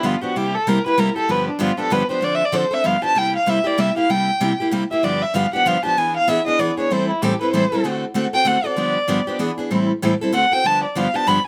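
Swinging and playful, this brisk jazz waltz moves at 192 BPM in a swung 3/4 and sits in G mixolydian, cut from a longer piece. A warm, bowed violin carries the melody as a solo from 0.0 to 11.5 seconds, singing with vibrato and sliding portamento, while a bright picked steel-string acoustic guitar with fresh strings and audible finger squeak supplies the accompaniment through changes like C7, G7, E7, Am7 and D7. Both instruments sit up front under close, detailed microphones with a light touch of reverb.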